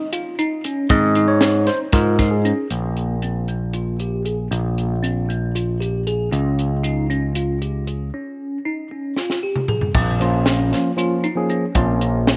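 Driving 7/8 at 232 eighth-note beats per minute, with a straight feel, propels this tense progressive instrumental excerpt in Bb dorian. A bright tine electric piano opens up front with a short solo over Ab harmony, while a second, bell-like tine electric piano with a phaser spins clean arpeggios throughout. A crisp, polished fusion drum kit with a high-tuned snare, tight kick, hi-hat, toms and crash sits forward in an airy studio room, and a grainy tube shaker ticks very quietly in the opening moments. At 0.9 seconds an overdriven, picked electric bass enters, amped and direct, the loudest part in the mix. From 2.7 seconds the harmony moves through Bb5 and Db, a drum fill at 9.2 seconds leads into a closing Bbm passage, and the front electric piano returns for the final bars. Light reverb gives the whole band a touch of space.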